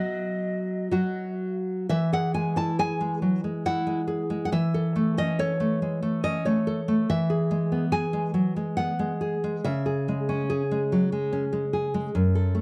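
In a rubato 3/4 at 70 BPM with uneven beats, this serene, tender romantic duo in E major opens with the concert flute sounding a single pure, straight-toned, tongued D#5 over the guitar. The flute sits lower in the mix with plate reverb and analog delay, and is heard only until 0.9 s. The fingerpicked nylon-string guitar carries the accompaniment up front from the start through 12.6 s, bright and full-bodied with a deep classical character, moving through E, A/E and C#m in a dark, warm studio sound with moderate reverb.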